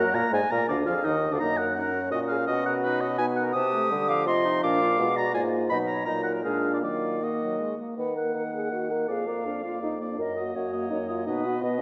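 Bathed in a wet concert-hall reverb, this quick classical-period movement for wind quintet moves at 166 BPM in 3/4 with a rubato feel, sounding cheerful and lively in E-flat minor. A pure, distant silver concert flute with a crisp attack and expressive vibrato carries the melody, while an up-front oboe with light vibrato sings a second line. A clear, soft-attacked clarinet and a warm, smooth-topped French horn fill in the accompaniment over a mellow, up-front bassoon bass, all five playing together across the 11.8 seconds as the harmony circles through Bb7, B and Ebm.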